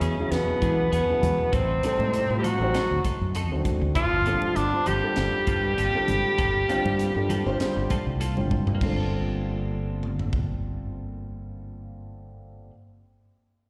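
Heard through a venue's PA with recital-hall reverb, this cut from a live electric jazz fusion set at 99 BPM has a slick, nocturnal mood and a light 16th-note swing, moving through Emaj7, Am7b5, D7b9 and Gm11. A breathy, whispered tenor saxophone with vibrato and scooped notes carries the melody up front over a round, punchy fretless bass, while a buzzy trombone in a metal mute plays a thin second line in the background; both horns stop at 8.2 seconds. A dark, boxy concert grand, clean compressed guitar stabs with chorus and tape echo, damped congas and a crisp kit with a high-tuned snare and tight kick fill out the groove, with a drum fill at 8.5 seconds leading into a new section at 8.8 seconds.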